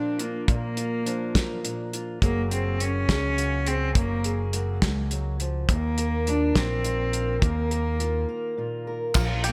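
Uplifting and warm, this indie folk excerpt moves in a gentle 6/8 at 69 BPM, with a soft-attack, sul tasto cello singing a floating melody through analog delay over a fingerpicked steel-string acoustic guitar and a cloth-damped, thuddy drum kit with dark cymbals. A round, punchy electric bass arrives at 2.2 seconds as the chords move from Bb to Gbadd9 and Ebsus2, all set in a light small-room ambience. After a break at 8.3 seconds, the arrangement builds at 9.1 seconds as a shimmering twelve-string acoustic guitar, crisp group handclaps and a jingly tambourine join in, with bright, twangy banjo arpeggios following at 9.2 seconds.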